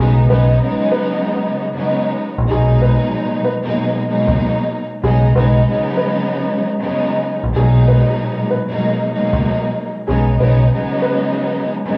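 Soulful and warm, this boom-bap hip-hop excerpt at 95 BPM in B major swings its 16ths over a lush, bowed, vibrato-rich string section up front, while a round, amped dub bass picks out low notes beneath and a mellow, woody, slightly detuned upright piano with audible action noise and analog delay sits in the background, the chords alternating between B69 and G#m9/B inside a small room with a cassette-worn home-recorded feel.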